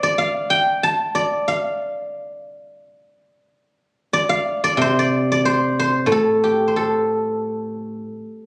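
The rhythm moves freely in a rubato feel, loosely anchored to 92 BPM in 4/4. This short fragment of a longer piece is Chinese traditional solo music for plucked strings, elegant and full of longing, set in the D yu mode with tuning at A4 = 438 Hz. A lone guzheng plays throughout the full 8.5 seconds, ranging from A2 up to A5. Played with fingerpicks, its acoustic tone is silvery and ringing, sitting up front in the mix. A moderate recital-hall reverb with a decay of about 1.4 seconds surrounds the instrument, and the sound carries the character of a phone capture in the room, with compression applied.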